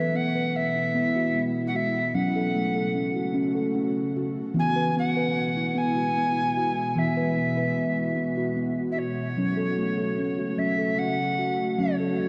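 A slow, steady 6/8 pulse at 50 BPM frames this hypnotic, meditative world piece in F# minor, where a round, ringing steel tongue drum struck with soft rubber mallets plays arpeggios up front, a breathy tenor recorder with chiff and vibrato carries the expressive melody through a touch of delay, and an ethereal detuned pad with ensemble chorus and its own reverb enters at 0.2 s with sustained E and F#m chords, all set in a dark production with a long church reverb that moves into a new section at 9.4 s.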